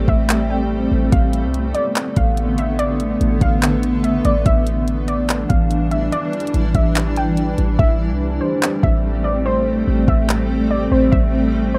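Melancholic and ethereal, this atmospheric cloud-rap piece at 144 BPM in A minor moves in a half-time feel, with a blurred, granular pad pumping under sidechain and its own reverb, a deep, boomy 808-style bass, a soft electronic R&B drum kit of kick, handclaps and hi-hat whose hi-hats drop out from 7.8 s, and a warbling, nasal lo-fi pluck carrying the melody through chorus and tape echo, heard in a rough home-demo mix with a small room sound.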